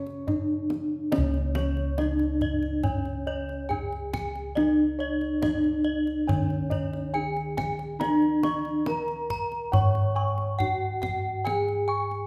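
Serene and shimmering, this short excerpt of Javanese gamelan in C# pelog barang moves at 70 BPM in a straight 4/4, with a mellow, padded bronze metallophone carrying the melody over round, beating bossed gongs in the bass, higher gong arpeggios sitting airy and up front, a deep, close kendang struck with hard hands, and from 1.1 seconds a bright, dry horn-mallet metallophone adding its own paired-tuning arpeggios, all set in a recital hall's reverberant glow.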